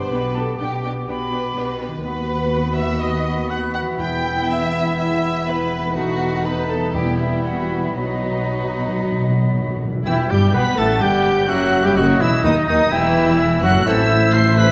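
Urgent and restless, this dramatic romantic orchestral passage, cut from a longer piece, sets a lush, expressive high violin melody over a second line shared by airy silver flute, oboe, a distant clarinet and another violin section, with even violas, focused cellos and woody double basses beneath. A clear bassoon, very quiet horn chords and bright, ringing harp arpeggios fill out the texture. Hard-mallet timpani enter at 4.0 seconds and play a fill before the music turns at 10.1 seconds, when smooth-topped trombone chords and dark trumpet stabs join, all within a reverberant scoring-stage space and a flexible, rubato feel.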